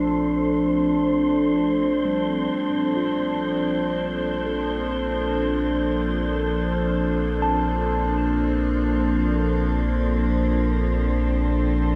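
Ambient excerpt in free time and Bb major with a peaceful mood, built on an up-front, evolving, detuned wavetable pad holding a sustained F/Bb chord with chorus, a deep, round sub bass fading in beneath it, and a dark, breathy wind-like tuned noise texture floating high above, while a worn, slightly out-of-tune tine electric piano enters at 2.0 s in the background, fading in with tape-echoed arpeggios, in a dreamy mix soaked in plate reverb.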